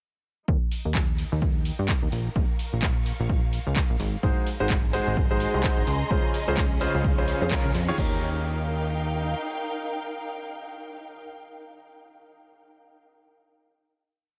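Piano house at 128 BPM in Eb mixolydian, this short, complete piece feels euphoric and feel-good, with a swung 16th-note groove. A dry analog drum machine drives a four-on-the-floor kick with crash hits, layered with a programmed house kit whose bright, overdriven hats and claps mark the backbeat. Underneath, a plucky sawtooth-and-square bass plays a funky syncopated riff with a fast attack and short decay, pumping against the kick, while a dark, lush string section fades in with expressive vibrato, drifting slowly through Eb, Bbm, Ab7 and Dbmaj7. At 4.2 seconds a clear, polished baby grand enters up front with close-voiced, dotted-rhythm chords, colored by analog delay and the same pumping. The band hits an accent at 7.5 seconds before the groove gives way at 8.0 seconds to a final Eb7 chord, carried by the strings, piano and bass in a light reverb.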